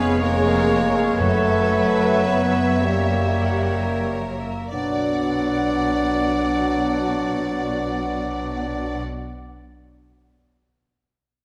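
Swaying in a slow, rubato 6/8 that slows down through the first 4.7 seconds, this elegiac, yearning passage from a romantic symphonic movement is cut from a longer piece. A rich studio violin section carries the melody with soft-attacked, expressive vibrato. Alongside it, a clear, intense chamber violin section, a lightly vibrato solo oboe, a dark, distant clarinet and an airy, hollow flute section with crisp attacks weave second lines. A mellow, tight French horn section, the most prominent voice in the balance, holds sustained chords. The chamber violas and a vintage-toned solo bassoon fill out the accompaniment, while cellos with portamento and a focused double bass section anchor the bass, and very quiet timpani struck with hard mallets on calf heads enter at 1.2 seconds. The harmony moves through a suspended and then a b9 dominant before settling on B minor at 4.7 seconds, the whole ensemble bathed in the generous reverb of a concert hall.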